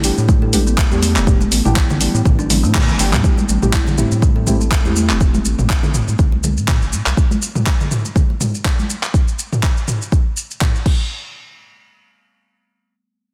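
Afro house with a warm, driving mood, this short cut from a longer piece opens straight into a drop. A deep house kit of handclaps, hi-hat, shaker, toms and crash, whose snare carries a soft-clipped edge, starts things off, soon joined by bright, soft-handed congas pattering in the background and then the layered electronic kick, which sits up front with a deep, tape-tinged punch. A mellow chord stab, detuned and wave-folded with chorus and tape echo, pumps against the kick over a round, dark analog bass. A woody kalimba rings out thumb-plucked arpeggios, softened by a low-pass filter and tape echo. A drum fill and band accent lead into a shift from G to Am7 at 3.2 seconds, where filter sweeps move across the bass and kalimba. The stab and kalimba fall away, the bass drops out at 7.1 seconds, the congas fade by 9.0 seconds, and the kick and kit carry the dense, heavily limited mix in light reverb until 11.0 seconds.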